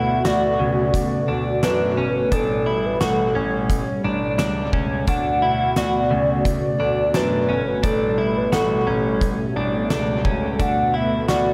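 Dream pop with a floating, blissful mood, this 11.5-second passage cut from a longer piece drifts between D6 and A7sus4 chords in a straight 4/4 feel, bathed in an echo-heavy mix of spring reverb and small-room ambience. A warbling, nostalgic lead synth carries the melody with chorus, tremolo and dub echo over a smooth, detuned analog pad, while a clean, direct-recorded electric guitar picks compressed arpeggios through analog chorus and dub echo. A polished concert grand piano supplies deep, long-sustaining bass with audible action noise, and from 0.2 seconds an oversized, low-tuned acoustic drum kit adds a punchy kick, fat snare and hi-hat in a bright, pumping stone room, its hits trailing dub echo.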